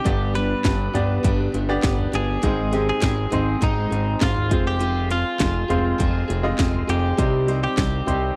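A fat, saturated analog bass sits up front in this short excerpt of piano-driven pop, its detuned sawtooth tone and quick filter pluck anchoring the low end from 0.1 seconds. Beside it, a house drum kit pairs a punchy kick and cracking snare with metallic hats, handclaps and toms, its layered electronic sound given a tape-tinged character. A bright grand piano carries the accompaniment with a brilliant, polished, short-sustained touch, while a picked steel-string acoustic guitar plays a riff in a dark, woody, full-bodied voice with the character of old strings. Over them, a clean, twangy electric guitar recorded direct plays the melody, compressed and coloured by subtle chorus and slapback echo. At 101 BPM in a straight 4/4, the harmony moves through G, Ab, Fm and Cm, giving the dry, close, 1970s-style studio sound a dramatic, earnest mood.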